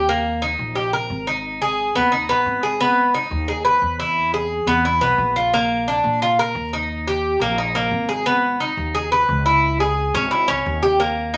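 A straight 4/4 pulse at 176 BPM drives this nostalgic Cuban son and guajira excerpt in G# harmonic minor, where a metallic, double-strung Cuban tres sits up front picking arpeggios through D#, G#m, E, A#, D#, G#m and C#m while a woody, growly pizzicato upright bass plays the bass line lower in the mix, all in a wet studio room.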